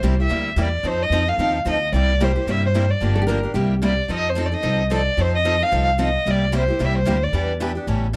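A brisk swung 4/4 at 222 BPM drives this charming fragment of acoustic string swing in C mixolydian, with two bright, picked steel-string guitars comping through changes from C7 to F7 and an up-front, woody, growly upright bass plucked beneath. Over them a bowed violin carries the melody with vibrato and portamento, its tone smooth and expressive, while a third picked guitar with fresh strings slips in a short second line between 3.2 and 3.7 seconds. Finger squeaks on the guitars add life, and the music sits in light reverb.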